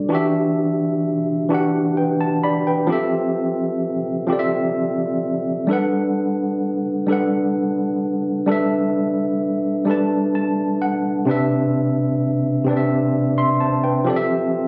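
Captured on a phone in a room with a club's reverb, this short excerpt of sensual, intimate R&B in 6/8 features a lone tine electric piano, up front and heard through its built-in speakers. The instrument sounds worn and slightly out of tune, lightly overdriven, as it moves through lush chords from Em7 and Fmaj9 to Gmaj9 and Cmaj9 across a range from C3 to C6. A brief fill from 9.9 to 11.3 seconds leads into the Cmaj9.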